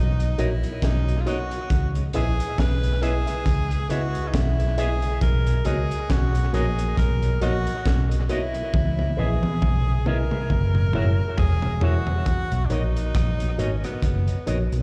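Lovers rock reggae at 68 BPM in B major, tender and smooth, where a bright tenor saxophone with vibrato carries the melody through tape and slapback echo over a round, foam-muted fingered bass sitting up front, a gritty, saturated breakbeat kit with a high-tuned snare and punchy kick that plays a fill from 8.7 to 12.3 seconds, a mellow tonewheel organ with key click turning through a slow rotary speaker, a tine electric piano in the background and twangy envelope-filtered guitar stabs, the whole mix heard as a live gig through the venue's PA with recital hall reverb in this cut from a longer piece.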